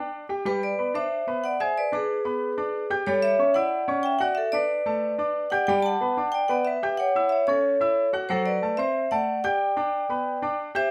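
The recording sits in a moderate studio reverb, with both instruments placed up front and close to the listener. This is a festive, joyful Latin piece in G major at a brisk 184 BPM in straight 4/4, tuned slightly high with A4 = 445 Hz, and it is cut from a longer work. A vibraphone struck with hard mallets carries the melody, its metallic, ringing tone heard with the motor off and a boxy small-room character. Beneath it, a clear, polished baby grand piano supplies the accompaniment across a broad range, sounding present. The harmony moves from G6 through Bm6, a rootless A7 and D, then on to Gadd9, A7 and D7 before landing back on G, giving the brief passage from 0.5 to 10.9 seconds an upbeat, celebratory lift.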